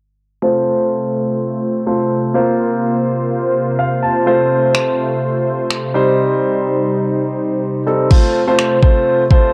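Lightly reverberant and hazy as a home cassette recording, this euphoric, upbeat dance-pop passage at 125 BPM in F mixolydian sets an intimate, polished concert grand piano, with audible action noise and deep bass, playing pumping, low-pass-filtered accompaniment and a fill at 3.5 seconds over smooth, detuned sawtooth pad chords with chorus and a soft attack, as the harmony moves through F, Bbsus2 and Cm beneath a filter sweep, until an electronic R&B drum kit with a knocking kick, finger snaps and crash cymbal enters up front at 4.7 seconds.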